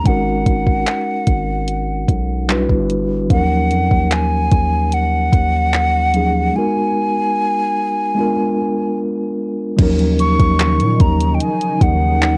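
Contemporary R&B at 74 BPM in Eb minor, this short late-night, sensual excerpt is cut from a longer piece and has the dry, intimate feel of a home cassette recording. A breathy, hollow concert flute carries the melody up front with vibrato and analog delay over a mellow tine electric piano, a deep, sine-toned 808-style bass, and an electronic R&B kit with a soft kick, hi-hat, handclaps and crash, with a break arriving at 6.5 s. At 9.8 s a detuned sawtooth pad enters in the background, its chorused chords pumping with sidechain as the harmony returns to Ebm9.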